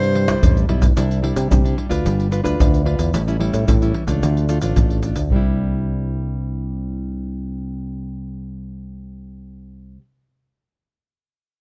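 A sunny, playful blend of samba and choro in C major, moving at 110 BPM in a straight 4/4, this short passage is cut from a longer piece. A breathy, whispered soprano saxophone sounds scooped notes on C5 with soft attack and vibrato, only in the opening 0.7 seconds, intimate and close-miked in a jazz manner. Underneath, a fingerpicked nylon-string guitar plays classical-style accompaniment throughout, its fresh strings giving off finger squeak, while a fingered electric bass runs through an envelope filter for a growly, amped tone, both sitting up front. The percussion of tube shaker, pandeiro, tamborim and deep surdo is struck with hard hands, playing a drum fill from 0.3 to 1.0 seconds and dropping out at 5.4 seconds. The harmony moves from Cmaj7 through Cadd9, G7, A7 and Dm before returning to Cadd9, and the dry, detailed recording keeps every part close and present.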